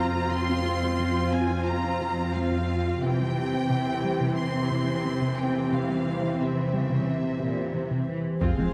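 Drenched in a roomy scoring-stage reverb with a shadowy production, this relentless, vast excerpt from a hybrid orchestral and electronic film score sets a lush, vibrato-rich violin section on the melody over clear, intense violas and cellos, a deep, moody analog pad with chorus, and a very quiet, tight sequenced synth pulsing arpeggios from 0.3 s, before a dark second violin line with expressive portamento, a smooth gliding synth bass riff, a background taiko ensemble struck with heavy sticks and a huge impact all arrive at 8.4 s.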